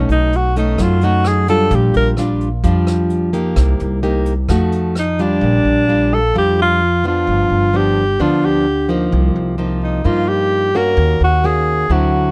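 A dry recording opens this short cut from a longer bossa nova in Bb major, moving at a straight 130 BPM with a sophisticated, sunny mood. Up front, a breathy alto saxophone with light vibrato and a smooth top carries the jazz-style melody from 0.0 to 2.1 seconds and again from 5.0 seconds on, over a bright, fingerpicked nylon-string guitar and a woody pizzicato upright bass that play throughout. A vintage brush kit with a punchy kick, hi-hat and rim click sits lower in the mix until 5.3 seconds, and the chords move through Bb6, G7, Cm7 and Ebm7 in the second section.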